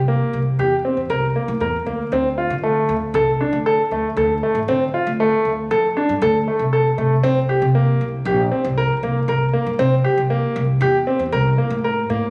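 A clear concert grand piano sits up front, spinning arpeggios between A3 and Bb4 from 0.1 s to 12.2 s, its polished tone carrying audible action noise and a long sustain. This is contemporary instrumental chamber music in an uneven 5/4 meter at 117 BPM with a straight feel, and its mood is hypnotic yet restless. An upright bass, also up front, plays pizzicato in a woody, steel-strung voice from A1 to D3 across the whole 12.3-second fragment cut from a longer piece. The harmony moves from C7 to D7(no3) at 2.1 s and on to C7(no3) at 7.2 s. The sound carries a moderate scoring-stage reverb and the ambience of a club, captured on a phone in the room.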